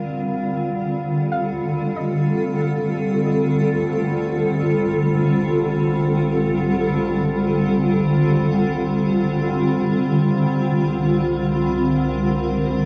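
A melancholic, spacious ambient fragment in free time opens on an up-front, cloudy granular pad holding blurred, slowly evolving chords from F9 through Bbmaj9 to Csus2. Soft, round plucked arpeggios with chorus and tape echo fade out by 3.7 seconds, while a pure glass harmonica beats faintly in the background. From 3.5 seconds a deep analog bass fades in, all of it wrapped in cassette tape and shimmering reverb.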